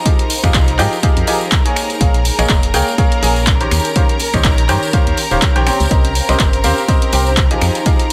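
Lush, distant violin-section chords with vintage sampler grit and a blurred granular cloud pad open this energetic, soulful piano house passage at 123 BPM in Bb dorian, cut from a longer track, quickly joined by a brilliant, worn grand piano riff with digital delay up front, a punchy, tape-warm electronic kick, an analog drum machine of finger snaps, handclaps and hi-hat on swung 16ths, and a dry tambourine in the background, then, from 0.4 seconds, a hollow, organ-like FM bass, with sidechain pumping on the violins, pad, piano and bass over Fm9, Bbm7, Eb13 and Cm7 in light digital ambience.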